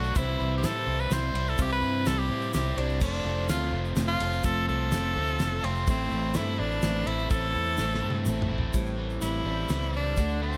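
Folk rock with a heartland rock edge, this reflective, wistful excerpt moves at 126 BPM in a straight 3/4 in A minor, with an edgy, forceful tenor saxophone carrying the melody up front, full of vibrato and scooped notes. Beneath it, a bright, picked steel-string acoustic guitar and a double-tracked, overdriven electric guitar riff ride over a chord cycle of C, F and Am. A growly, round fingered bass sits up front while a dry 70s drum kit with a fat snare and tight kick stays in the background alongside a grainy egg shaker, all in light reverb, before a drum fill at 7.8 seconds sets up a saxophone solo over Am7 from 8.7 seconds.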